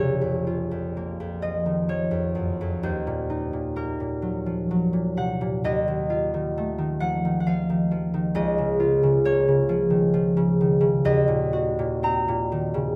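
Wistful and mysterious, this short cut from a longer classical piece features a solo concert harp, fingerpicked, ringing and up front, drifting in rubato 3/4 at 66 BPM in Bb minor, tuned to A4 = 435 Hz, ranging from Bb1 to Bb5 through chords of Bbm, Ebm, F7/Eb, Bbm/Db and Cm7b5/Eb, captured by close, detailed microphones in light reverb.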